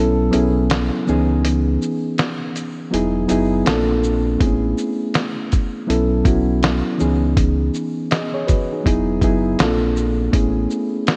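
A reedy, clean electric piano sits up front through a low-pass filter, moving through lush extended chords such as C#m9, Emaj9 and Amaj7 in this hazy, nostalgic lo-fi hip hop fragment with a swung 16th-note feel. A muffled, pitched-down sampler drum kit with a thumpy kick, shaker, hi-hat and snare carries vintage 12-bit grit from 0.3 seconds, while a deep, sustained sine sub bass with an added octave underpins it until 10.7 seconds. A lush hall reverb soaks the whole dreamy mix, and the passage opens with a break that runs to 4.4 seconds.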